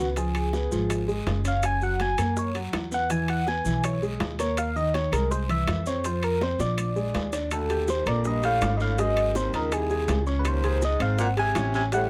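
Afro-Cuban jazz at a brisk 163 BPM in 4/4, fiery yet sophisticated, heard as a short cut from a longer piece. A round, gentle FM synth lead with a keys-like, decaying tone, chorus and vibrato carries the melody up front, over a concert grand piano whose smooth, vintage sound has audible action noise and deep bass. An upright bass played pizzicato sits up front with a dark, growly steel-string tone. The percussion enters at 0.2 seconds: low-tuned bongos played with soft hands, ringing metal-shell timbales, a raspy guiro and grainy maracas, with very quiet woody claves following at 0.3 seconds, and a drum fill leads into the second section at 7.5 seconds. There a distant, roomy baritone saxophone joins as a second line, with light vibrato and scooped notes, while harmonies move from Db7 to Ebmaj7#11 and end on Dbsus2 under light reverb.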